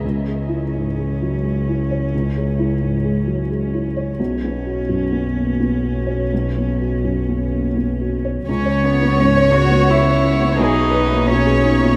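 Longing and reflective, this neoclassical excerpt for piano and strings moves at 86 BPM in a rubato 3/4, centred on C# dorian and cut from a longer piece. A felt-muted upright piano carries the accompaniment from the start, its boxy, thick-felted tone soft and mellow, while a single bowed double bass anchors the low end up front with a dark, sul tasto sound. A lone cello plays a second line above it, its airy bow and smooth top adding vibrato and a soft attack. The harmony shifts from C#m to Bsus2 at 4.2 seconds, then to C#m7 as the chamber violin section enters at 8.5 seconds with a close, bowed melody in sul tasto, its vibrato giving the texture a tender glow. Everything sits in a vast, echoing space with a huge, wet reverb that lets the sound hang long after each phrase, closing on G#madd9/B.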